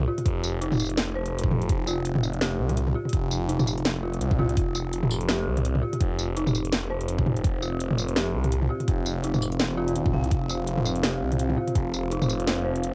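Heavy and tense, this half-time drum and bass excerpt carries a swung sixteenth-note feel and the hazy character of a home cassette recording with light reverb. An eerie, inharmonic FM synth bell plays arpeggios throughout, its fast-attack, decaying tones colored by chorus, tremolo, tape echo and cassette tape. Beneath it, a thick, swirling detuned saw bass sits up front, saturated and sustained, run through a phaser. The drum kit, also up front, brings a cracking snare, metallic hats, tambourine and toms, while a knocking, tape-warm electronic kick enters at 0.3 seconds and drops out at 11.8 seconds, both drum parts re-recorded in a small room. From 4.6 seconds a deep, moody analog pad adds slow-attack sustained chords in the background, roughened by 12-bit sampler grit, chorus and cassette tape and pumping against the sidechain.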